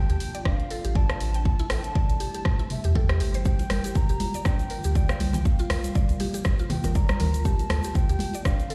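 Afro house at 120 BPM in G dorian with a warm, driving swing, where a hollow, chiffy jazz flute with dub echo floats over an ethereal pad, a woody, chorused mallet-like pluck arpeggio and a round sine sub bass, these three pumping together, alongside a punchy, up-front electronic kick and a house kit of hi-hat, rim click and toms, moving through Dm7, Am7 and Gm7 until grainy tube shaker and hard-hand congas join at 3.5 and 3.6 seconds in this short stretch cut from a longer piece, played out on a big sound system in a bare stone room.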